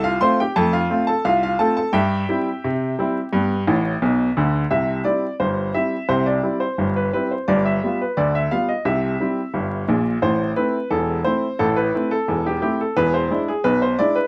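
A straight 2/4 pulse at 87 BPM drives this playful, cheerful ragtime piece in C major, a short cut from a longer work played by a lone upright piano with a bright, woody tone that sits up front in the mix. The opening phrase moves from F through C/G to G, and a brief piano fill at 3.7 seconds leads into a second section at 4.7 seconds that travels through C, G7, Am and E7. A touch of light reverb colours the piano, set within a dry, close 1970s-style studio sound dusted with vinyl crackle.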